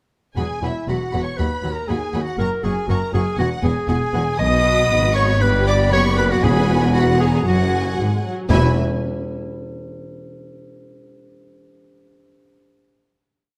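Heroic adventure film score in E lydian at 119 BPM, soaring throughout: lush bowed violin sections sing with vibrato, one doubling the tune at the octave above a clear, up-front solo clarinet, while a second violin section and expressive violas with portamento play sustained chords in the tune's rhythm, the violas answering at phrase ends; rich, distant cellos and smooth double basses hold the bass, round soft-mallet timpani strike single bass notes from 4.4 s, and light reverb frames a close, detailed sound before the final chord at 8.5 s.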